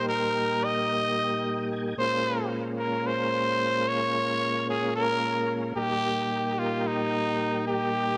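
Intricate and tense, this short progressive instrumental fragment, cut from a longer piece, drifts in free time around a Bb dorian center. A growling trumpet carries the melody up front from start to finish, its raspy, gritty tone bright and punchy, with light vibrato and a pop-style solo phrasing, colored by analog delay and the grain of cassette tape. Beneath it, a tonewheel organ plays accompaniment across the full 8.2 seconds, smooth and clean, shimmering through chorus vibrato and a fast rotary speaker, and it slips in a brief fill between 1.2 and 2.0 seconds. The harmony moves from Eb over Bb to Bbm7 at 2.0 seconds, returning to Eb over Bb at 5.8 seconds. A lush hall reverb with a long tail surrounds both parts, and the home cassette recording gives the whole passage a lo-fi, intimate character.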